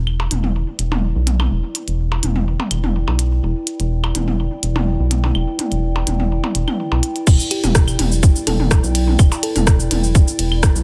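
Hypnotic and quirky, this short minimal techno cut from a longer piece rides a straight pulse over a single Em7 chord. A rubbery, hollow square-wave bass sits up front, with a bouncy filter pluck and sidechain pumping, beneath a warbling, nostalgic lo-fi pad that carries chorus, built-in reverb and the same pumping. A minimal click drum kit of clicky hats, cabasa, rim click, ride and crash ticks along with a tape-warm, small-room character. Electronic claves, percussion blips and toms scatter tape echo around it. At the drop at 7.3 seconds, a tight, layered electronic kick lands up front with large-room weight, and from 7.5 seconds a round, tine-like thumb-piano-style pluck drifts gently in the background through chorus and tape echo. The mix is finished with light digital ambience.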